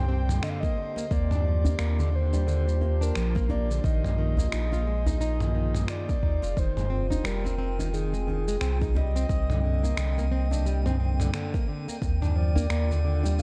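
Organic downtempo at 88 BPM in F dorian with a swung sixteenth-note feel and an earthy mood, where a deep, round sine sub bass sits up front under a fingerpicked flamenco guitar with 12-bit sampler grit and tape echo, a breathy, flute-like synth lead with vibrato, chorus and tape echo carries the melody, a nostalgic, warbling tape-like pad with sidechain pumping holds sustained chords over Ebmaj9, Fm9 and Cm9, and a faint glassy texture of drifting overtones hovers in the background, while a gritty, compressed sampler-style kit of finger snaps, shaker and toms enters at 0.3 seconds and a layered electronic kick and a djembe with metal rattles join at 0.6 seconds, all in a dark, warm, dry mix.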